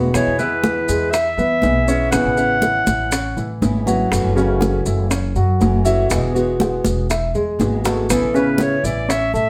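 Relaxed and warm, this 121 BPM Cuban son and guajira excerpt in A major sets a roomy, classical-style clarinet melody that is clear yet distant over a boxy fingerpicked archtop guitar with audible finger squeak, long-sustaining baby grand piano arpeggios and a woody, growly, thumpy pizzicato upright bass up front, while tight soft-handed bongos, thick-skinned, high-tuned congas struck with hard hands in the background and grainy maracas fill out the close, dry percussion, the clarinet dropping out at 3.6 seconds and returning at 8.1 seconds just after a drum fill, all captured as a band playing live in one room with moderate studio reverb.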